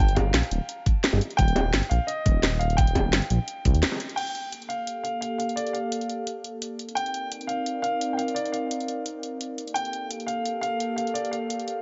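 Lightly reverberant digital ambience and a rolled-off top end give this melancholic, rolling liquid drum and bass cut in G minor at 172 BPM a soft haze, while a mellow, delayed baby grand piano carries the melody throughout. The opening drop pairs a deep, rumbling detuned saw bass with a knocking electronic kick, tight high-tuned bongos and a cracking, bright-hatted drum kit, ending on a band accent at 3.8 seconds. From 4.6 seconds an airy, breathy pad with chorus and vintage 12-bit grit sustains Gm9 and Cm9 chords under a filter sweep, as the piano and kit play on.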